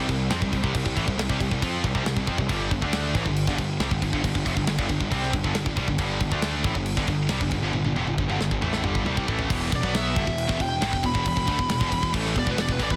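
A growly, fuzz-laden picked bass sits up front beside a tight, mid-forward drum kit with a rolled-off top and softly clipped kick, driving this dark, heavy 137 BPM heavy metal excerpt in E phrygian, where three picked rhythm guitars (two high-gain and distorted, one of them scooped, plus a very quiet, double-tracked sludgy one) churn a riff in the background over C5, G5 and E5 power chords, a drum fill runs from 7.7 to 9.5 seconds, and a bright, high-gain lead guitar with delay enters at 9.8 seconds for a short solo, all in a dense, heavily limited modern master with light reverb.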